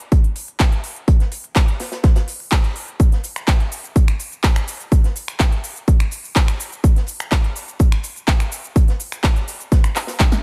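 A punchy, tape-warm electronic kick sits up front through this driving, expansive house excerpt at 125 BPM in straight 4/4, layered with an overdriven big-room dance kit of crisp hats, punchy snare, snaps, handclaps and shaker, its hats and percussion pumping with sidechain, while a dark, smooth acoustic jazz kit with a medium-tuned snare murmurs in the background, all dry, leading to a drum fill at 10.2 seconds.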